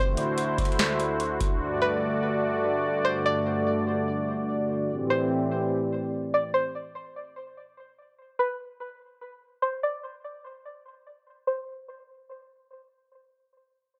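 A dry, gritty hardware recording opens this hazy, melancholic stretch of atmospheric cloud-rap in A dorian at 146 BPM, felt in a half-time 4/4. A booming analog drum machine with a deep kick, crisp snare and metallic hats appears only briefly at the start, stopping by 1.6 s. A smooth, detuned analog pad holds sustained chords through D7, Gmaj7(no3) and Am7 with chorus and sidechain pumping until 6.5 s, while a twangy, nasal, string-like resonator pluck carries the melody with chorus, tape echo and a filter sweep, running on to 12.7 s.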